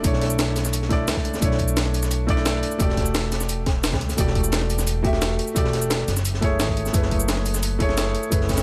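Liquid drum and bass at 174 BPM in B minor, this dreamy, lush 8.6-second excerpt moves through Bm11, Em11 and F#m11 chords. A soft, felt-muted upright piano sits up front with an intimate, mellow tone, its accompaniment carried by a digital delay. Beside it, a pizzicato upright bass with steel strings gives a woody, thumpy low end, also placed close. The drums are layered from three sources: a punchy electronic kick, a compressed, pitched-up sampler-style jungle kit with cabasa, hi-hat and a medium-tuned snare, and a saturated breakbeat kit with a high-tuned snare and high-pass filtered hats, kept dark and rolled-off in the background. A small room reverb wraps the whole in a compact space.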